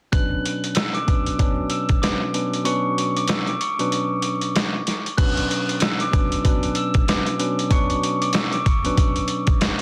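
Gritty and moody, this boom-bap hip-hop excerpt in B minor moves at 95 BPM in 4/4 with a swung sixteenth-note feel, opening on a Bmadd9 chord. A sampler-style drum kit sits up front, compressed, pitched down and muffled, with a thumpy kick, a medium-tuned snare, hi-hat and crash carrying a tape-warm, small-room character. The kick drops out between 2.7 and 5.2 seconds, returning as the piece moves into its second section at 5.2 seconds. A worn, slightly out-of-tune tine electric piano provides the accompaniment, clean yet heard through a combo amp and cassette tape, while a dark, bell-like glockenspiel played with hard plastic mallets rings out the melody high above, trailed by tape echo until 9.1 seconds. Light reverb, vinyl crackle and a dense, heavily limited master give the whole cut its gritty finish.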